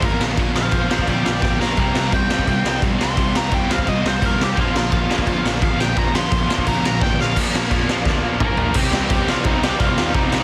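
A raw garage drum kit sits up front in this urgent, aggressive punk rock excerpt at 172 BPM, its high-tuned snare, punchy kick, crash and toms sounding gritty and saturated in a bright stone room, with fills at 1.4, 7.0 and 8.1 seconds. Over it, a biting, overdriven lead guitar plays a picked solo until 7.4 seconds, while three distorted and overdriven rhythm guitars, one of them double-tracked and high-gain, churn out riffs far back in the mix beside a growly fuzz bass. The chords move from Bb through C5 and back to Bb before landing on Cm, all in a dense, heavily limited master with little reverb.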